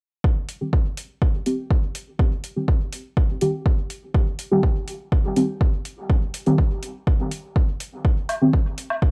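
Dub techno in C minor at 123 BPM, this hypnotic, nocturnal fragment of a longer piece sets a punchy, up-front electronic kick in a small room under overdriven metallic hi-hats, while deep, mellow, detuned chord stabs on C minor, dark and wave-folded with chorus, phaser, sidechain pumping, dub echo and a filter sweep, sit close in a dry, gritty cassette-tape sound until a woodblock arrives at 8.3 seconds.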